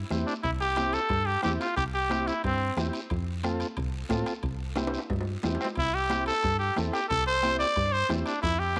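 This cumbia excerpt moves at a brisk 180 BPM in straight 4/4, festive and danceable in C major, with the harmony shifting from C to F and back. A punchy, round FM bass anchors the low end with dark, quickly decaying notes, while a vintage combo organ adds a reedy, clean accompaniment colored by heavy vibrato. Up front, a growling trumpet takes the solo from 0.3 seconds, gritty and brilliant with scooped notes and vibrato, then falls away before returning at 5.6 seconds. Behind it, a soft-beaten bombo, ringing high-tuned congas played with hard hands and metal-shelled timbales keep the groove going in the background, a raspy guiro scrapes along, and a drum fill arrives at 4.8 seconds. Light studio reverb gives the mix a touch of space.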